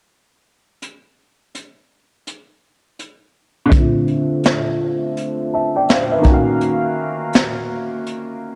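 Hazy and reflective, this swung lo-fi hip hop excerpt opens at 0.8 seconds with an up-front vintage brush kit of punchy kick, high-tuned snare and hi-hat. A bright, woody, slightly detuned upright piano enters at 3.7 seconds through cassette-tape coloring and a low-pass filter sweep, moving from Dm9 to Ebm9 before a break at 6.6 seconds, all set in a small room with light reverb.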